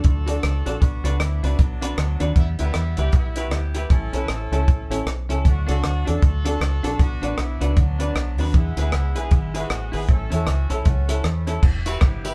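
Recorded live in one room with moderate reverb, this upbeat, joyful ska excerpt in swung 4/4 puts a deep, round, foam-muted dub bass and a punchy, dry cocktail drum kit with dark cymbals up front, while a twangy, clean electric guitar and a woody, slightly detuned upright piano with dub echo add stabs and accompaniment, a distant horn section with light vibrato carries the melody, and a jingly tambourine slips in at 11.9 s.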